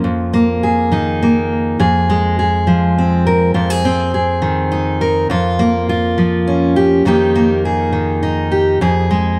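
A steady 6/8 pulse at 68 beats per minute carries this yearning, bittersweet folk fragment in F minor, cut from a longer piece, where a single fingerpicked steel-string dreadnought sits up front with bright fresh strings, a full-bodied tone and a touch of analog delay, moving through chords such as Ebsus2/F, Fm, Ab/F and Bbm/F (the second section begins at 1.8 seconds), all within light reverb and a dark production.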